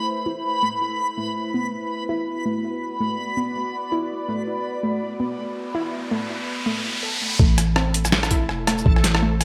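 A growling, buzzy 808-style bass lands up front at 7.4 seconds with a thumpy, pitched-down electronic kick, and a gritty boom bap sampler-style kit of snare, hi-hat, rim click and shaker with gated reverb joins at 7.6 seconds, dropping this heavy, dark half-time drum and bass piece at 164 BPM in A minor into its second section. From the start, a tense, string-like drone with phaser and sidechain pumping holds sustained chords beneath a reversed, dreamy swelling texture. At 0.3 seconds a warbling, lo-fi pluck joins, its arpeggios carrying chorus, cassette-tape colour, delay and a filter sweep over Am and Bm, while an electronic riser enters at 5.6 seconds. A lush hall reverb and a bright 1980s-style digital sheen frame the whole excerpt.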